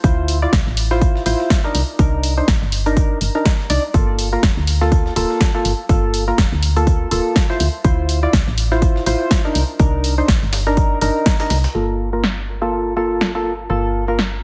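Deep and warm, this deep house cut moves at 123 BPM in G minor with a swung 16th feel, as a hollow, mellow organ stab bathed in lush chorus and digital delay moves through minor-ninth chords over a woody, round FM bass that pumps with sidechain compression. An up-front, layered electronic kick with real punch and a tape-tinged analog drum machine with low-pass filtered hats and snare drive the groove, while a gritty sampler-style soul kit sits very quietly underneath. The kick and the dusty kit drop out by 11.7 seconds, leaving the stab to ride a filter sweep over the bass and the analog drum machine to the end, framed by light digital ambience and a heavily compressed, radio-like finish.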